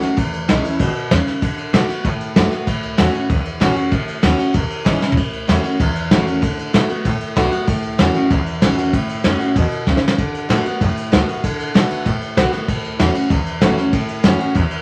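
Vinyl crackle and a moderate studio reverb frame this rollicking, retro rockabilly excerpt at 192 BPM in 4/4 with a straight feel, moving through A, D and E sixth chords in A major. An up-front, full-bodied picked steel-string acoustic guitar from a jumbo body carries the accompaniment over a woody, thumpy pizzicato upright bass on gut strings. A soft brush kit, placed up front in a small room with dark cymbals, a medium-tuned snare and a tight kick, adds a drum fill at 5.0 seconds, just before the second section begins at 5.2 seconds, and another at 9.9 seconds.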